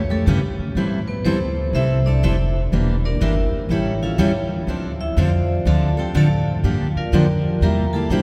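A woody, thumpy pizzicato upright bass on gut strings opens this fiery, virtuosic excerpt of acoustic string swing in A minor at 122 BPM, joined at once by full-bodied picked steel-string jumbo guitar up front and a hard-mallet vibraphone whose dark, ringing, metallic tone with slow motor vibrato takes a smooth solo from 0.8 seconds over Am7, Em7b5, A7, Dm7, Gm7 and C7, all bathed in the long, wet reverb of a cathedral-like hall.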